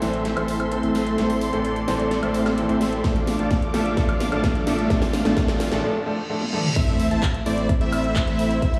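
Powerful and emotional, this short festival progressive house cut at 129 BPM in A minor opens with a bright grand piano, lush bowed strings carrying vintage sampler grit, a huge detuned supersaw riff under a filter sweep, a saturated sub bass and a big-room kit with a huge snare and metallic hats, all of them except the kit pumping with sidechain, as a punchy up-front kick arrives at 3.0 seconds and a very quiet riser, reverse cymbal and sub drop build toward a brief break before the drop lands at 6.8 seconds with a bold unison lead arpeggio, all soaked in a dreamy hall reverb.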